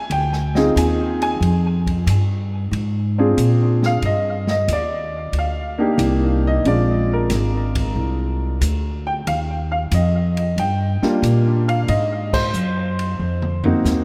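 Jazz piano trio in a swinging, cool mood, moving at 92 BPM in 4/4 with a swung eighth-note feel, a short cut from a longer piece. A slightly detuned, vintage-toned upright piano sits up front carrying the melody, its smooth, warm sound touched with tape echo, and it takes a solo passage through the first 4.0 seconds over Fm7 and Bb7. From 4.0 seconds the music settles into C minor, with the harmony passing through Cm9, Bb9, Ebmaj7 and Ab7. A woody, pizzicato upright bass with steel strings holds the low end close to the listener, while an open, polished acoustic drum kit in a small, airy room adds dark cymbals, a medium-tuned snare, a boomy kick and toms. The band hits an accent at 12.2 seconds, and a drum fill arrives at 13.2 seconds, with a moderate plate reverb giving the mix a dreamy, reverb-soaked glow.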